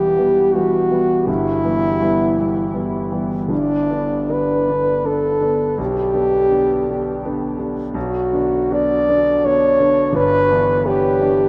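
Romantic classical music in a solemn, elegiac 3/4 with a flexible rubato feel, this fragment features a mellow French horn singing the melody up front with light vibrato over a warm concert grand piano whose deep bass anchors the accompaniment, with both bathed in the long, huge reverb of a vast, echoing space as the harmony drifts from E minor to a closing G6.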